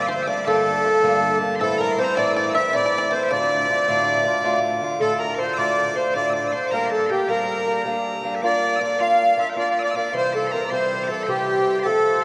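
A reedy, sweet accordion with light tremolo tuning carries the melody up front in this dark, lively, driving Celtic slip jig in 9/8, cut from a longer piece. Bright, piercing bagpipes hold a continuous second line high above it throughout. A twangy, percussive bluegrass banjo played with fingerpicks adds a very quiet second line until 4.6 seconds. A boxy, fingerpicked acoustic guitar in a swing style sits up front as accompaniment, reaching low into the bass, and the music moves into a new section at 5.0 seconds. The ensemble rings in a wet cathedral reverb with a long decay, as if played in a church or concert hall.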